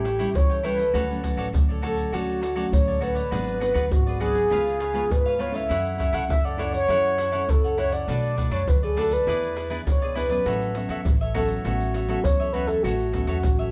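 Samba and choro in A major at 101 BPM, this lively, joyful excerpt of about 13.7 seconds puts a mellow, horn-like synth lead with a round, sustained, chorused tone up front over crisp picked cavaquinho, dark fingerpicked nylon-string guitar, woody pizzicato upright bass and close, dry egg shaker, pandeiro and tight surdo played with soft hands, all sharing a moderate large-studio reverb as a band playing live in one room, moving from A7 through Dmaj7, G#m7b5, C#7, F#m7, Bm7 and E7 to settle on A69.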